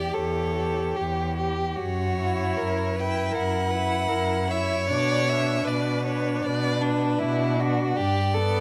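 Elegiac and melancholic, this brief passage from a slow romantic movement for string quartet unfolds in a flexible rubato. A single violin carries the melody with a rich, smooth and even tone, singing high above the ensemble. A second violin shapes a close, up-front inner line with soft attacks, expressive portamento and a warm glow, while the viola sits more distantly in the accompaniment, also sliding expressively between notes. Beneath them, the cello anchors the low bass with gentle attacks and a warm, expressive, up-front presence. All four bowed players use vibrato across the full 8.6 seconds, and a light reverb surrounds the group as a diminished chord leads through a sombre minor turn before it is cut from the longer piece.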